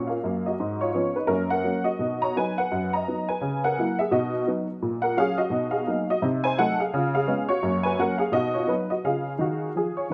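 Playful and exuberant, this short stride piano cut from a longer jazz piece bounces along at 170 BPM in 4/4 with a swung eighth-note feel in F# major. A lone honky-tonk upright piano carries the whole 10.1 seconds, ranging from F#2 up to A#5 and sitting present and up front. Its detuned, jangly tone has a woody, vintage character that gives every chord a saloon-bar charm. The harmony moves briskly through F#, B and C#7, with a Bmaj7 and a Cdim7 adding color before settling back on F#, B and C#. A moderate echo chamber reverb surrounds the piano, and the dark production lends the sound a mellow, aged glow.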